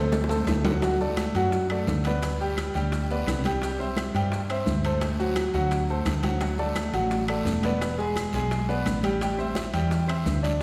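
Bright, brilliant concert grand piano sits up front, its deep bass anchoring accompaniment that spans F#3 to G#5 in this joyful, danceable salsa fragment cut from a longer piece at 172 BPM in straight 4/4. Beside it, a woody fretless electric bass, dark, growly and amped with a hollow-body roundness, holds the low end from E1 to G2, equally forward in the mix. A drum fill opens the first 0.8 seconds before the groove settles over a progression moving from D7 through D, G/D, C, Dadd9 and E7 to Am7. The percussion section fills in behind: ringing, medium-tuned congas and round, low-tuned bongos with soft hands and a compressed, saturated edge, both very quiet, plus metal-shell timbales, raspy guiro and grainy, mellow maracas in the background, with woody claves entering at 0.5 seconds. The whole band sounds as if placed in a church or concert hall, wrapped in a wet reverb with a 1.9-second decay.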